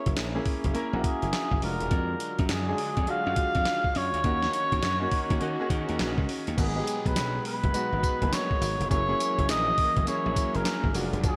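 A swung 103 BPM groove in 4/4 drives this bouncy, confident new jack swing excerpt in G# minor, built on a gritty, compressed sampler-style kit with a thumpy kick, fat snare, hi-hat, handclaps, tambourine and crash, alongside a bright, punchy slap bass. Up front, a cup-muted trumpet carries the melody with a veiled, mellow tone and vibrato, its slapback echo shared by a concert grand piano whose intimate accompaniment brings audible action noise and long sustain. From 1.9 seconds a smooth studio string section holds sustained chords in the background, all set in a concert hall reverb that gives a big arena sound.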